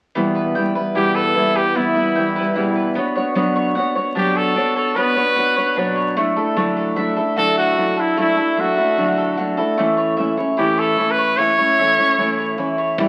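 A brilliant, present trumpet carries the melody from 1.0 seconds, its pop-style solo line full of vibrato and scooped notes sitting up front in this easy-going, carefree acoustic pop cut from a longer piece. Beneath it, a full-bodied, fingerpicked nylon-string guitar with fresh strings and a deep classical tone provides the accompaniment, also placed up front. A picked mandolin, round and double-strung, spins arpeggios alongside the guitar throughout. The tempo is a relaxed 75 BPM in straight 4/4, moving through Em, Bmadd9, Dadd9 and A. A punchy, airy kick drum appears only at 13.0 seconds, just as the passage closes. The whole recording has the sound of a very old 78 rpm record with vinyl crackle, wrapped in a wet studio reverb.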